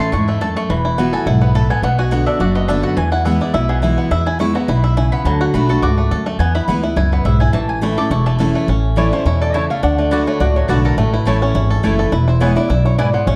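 A driving 4/4 pulse at 210 BPM with a light swing on the eighths carries this joyful bluegrass excerpt in A major, built on a thumpy, woody pizzicato upright bass up front and a bright, full-bodied dreadnought guitar whose picking catches the odd finger squeak. A twangy, percussive fingerpicked banjo carries the melody, while a mellow, round mandolin adds double-string stabs and takes the solo spot until 8.7 s. Near 9.0 s a metallic, nasal lap resonator guitar played with a steel bar enters for its own solo as a second line, all set in a dark production with a moderate large-studio reverb.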